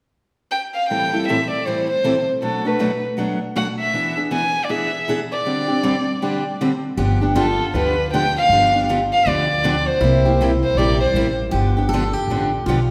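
A resonant church-like hall wraps this charming, swinging excerpt of acoustic gypsy-jazz in G mixolydian at 158 BPM, where an intimate, airy-bowed violin carries the melody with light vibrato over a bright, full-bodied picked steel-string guitar accompaniment, joined at 7.0 seconds by a woody, thumpy pizzicato upright bass and a second picked guitar line with audible finger squeak, moving through Am7, Bm7 and E7 before settling on G7 and C7.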